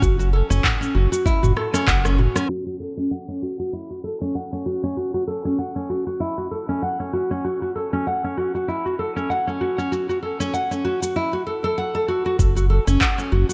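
Lightly reverberant and gently low-pass filtered, this short cut from an organic downtempo piece in F# minor moves at 97 BPM with a swung 16th-note feel and a mystical, warm mood. Up-front fingerpicked nylon-string guitar arpeggios with a full-bodied classical tone and delay run throughout, filter-swept from 2.5 to 12.4 seconds, over an overdriven electronic kit of cabasa, handclaps, rim click and toms. A round, dark analog bass with tube saturation and sidechain pumping plays alongside a gritty, thumpy kick at the opening and again at 12.4 seconds, with a drum fill at 1.6 seconds.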